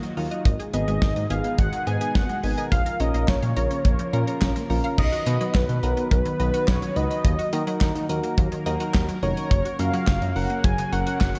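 Nocturnal and driving, this synth-pop cut moves at 106 BPM in a straight 4/4, drawn from a longer piece. A thick, detuned unison lead with a dark sub-octave weight carries the melody through a digital delay. Beneath it, a sweeping resonant pad with a slow attack and a filter swell holds sustained chords in the background, while a squelchy, resonant blip pluck spins arpeggios through chorus and delay. A damped 70s drum kit sits up front with its tight kick, medium-tuned snare, handclaps, hi-hat, dark cymbals and crash, dry at the source but dressed in gated reverb. From 0.2 s a soft, round electric-piano-like synth keys part adds mellow accompaniment with chorus and tremolo, and a smooth, nasal synth bass with vibrato anchors the low end. The harmony moves from G#m and A#m into a second section at 5.0 s, passing through B, D#m and F#, all within a light small-room ambience.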